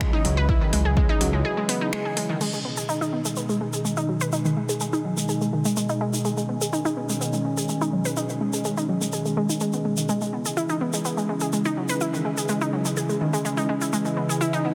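A bright, wave-folded unison pluck sits up front in this dark, dramatic melodic techno excerpt at 125 BPM in G# minor, its delayed arpeggios pumping with the sidechain and shaped by a filter sweep from 2.4 seconds as the chords move from C#m to G#m and back to C#m. Beneath it, a thick, lush pad holds sustained chords with chorus, and a warbling, nostalgic tape-like pad lingers in the background. A deep, rumbling detuned saw bass and a punchy, overdriven kick drive the opening alongside a deep house kit of crash, finger snaps and metallic hats. After a break from 1.4 seconds, a grainy, compressed tube shaker enters at 2.4 seconds and carries the rhythm to the end, with light digital reverb and a dense, heavily limited master.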